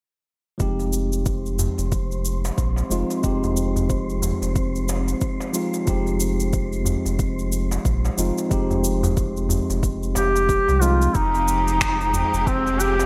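A vintage, up-front duduk with vibrato, scooped notes and delay enters at 10.2 seconds to carry the melody of this meditative, earthy organic downtempo excerpt, arriving over a swung groove of an overdriven deep electronic kick, tape-warm shaker and finger snaps, and a crisp metal-shell darbuka played with soft hands, while a clean tine electric piano with digital delay and a round sub bass under a filter sweep both pump with the sidechain, an airy wind-like noise texture drifts in its own reverb, and a bowed, sidechain-pumped string section joins at 11.2 seconds, the mix sitting in light digital ambience with a bright 1980s-style sheen.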